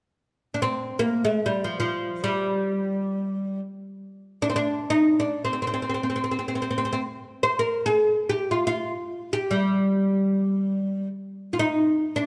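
A solo oud carries the melody in free time, its fretless, woody double strings plucked with a plectrum and placed up front, ranging from F3 to C5 in G maqam bayati. This soulful, longing Arabic passage, cut from a longer piece, sits in a moderate recital-hall reverb of 1.7 seconds, with the oud playing from 0.5 to 12.3 seconds in an instrument tuned to A4 = 438 Hz.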